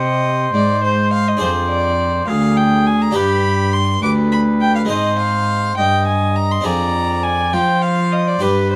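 In a rubato 12/8 pulse of 68 dotted-quarter beats, this grave, introspective baroque-style sonata movement with continuo moves through Cm, Dm7b5/F, G and Ab across an 8.8-second excerpt cut from a longer piece. An up-front solo violin with gut-string tone and light vibrato carries the melody, while a distant, roomy oboe spins a second line beneath it. A nasal bowed cello anchors the bass and a brilliant Flemish-style harpsichord with plucked octave strings fills in the accompaniment, all within light reverb.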